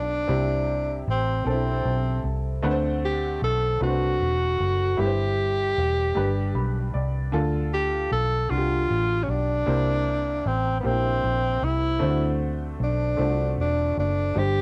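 Slow gospel in a straight 6/8, jubilant and uplifting, cut from a longer piece and carrying the character of a home cassette recording with light reverb. A breathy tenor saxophone leads up front in a mellow jazz style, with light vibrato, scooped notes and a smooth top, over a woody, slightly detuned upright piano and a dark, round, foam-muted electric bass. The piano steps forward with a fill from 6.2 to 7.3 seconds as the chords move through C, D7, G and Dm toward C7.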